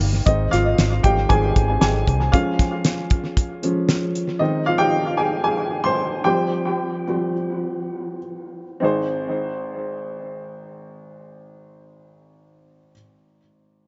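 Echo-heavy and dulled at the top, with a moderate spring reverb, this uplifting piano-driven pop cut in Ab major moves at 98-116 BPM in a straight 4/4, as a woody, boxy upright piano with short sustain and analog delay carries the accompaniment up front, alongside a dark, round, foam-muted electric bass until 2.3 s and a dry 70s drum kit with fat snare, tight kick, hi-hat and delay until 4.3 s, before the piano's solo slows down from 4.4 s.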